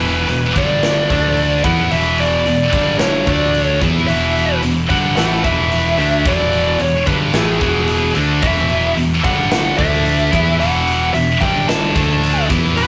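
From the first beat, this energetic, powerful hard rock passage, cut from a longer piece, pairs an up-front, bright, double-tracked high-gain rhythm guitar riff cycling through E5, G5 and D5 chords with a dark, distorted lead guitar melody above it, a growly, punchy picked bass underneath, and a tight, polished metal drum kit of kick, snare and hi-hat ringing in an airy big room, all captured with a rough rehearsal-room edge, tube saturation and moderate reverb.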